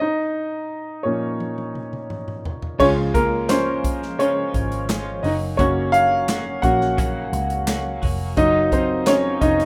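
Uplifting and hopeful, this piano-driven pop excerpt moves at 86 BPM in a straight 4/4, set in Db major. A warm, up-front baby grand piano opens alone, its plate reverb giving the chords a natural glow, moving from Bbmadd11 toward Db at 2.8 seconds, then Gb and Ebmadd9. An airy, polished country drum kit enters at 1.4 seconds with a fill, its sound built from punchy kick, medium-tuned snare, toms, hi-hat, crash and handclaps. At 2.8 seconds a clean, compressed electric guitar recorded direct picks a riff shimmering with harmonic tremolo, while a dark, round, foam-muted picked bass settles into the low end. The whole sits in a wet studio reverb with the rough character of a home demo mix.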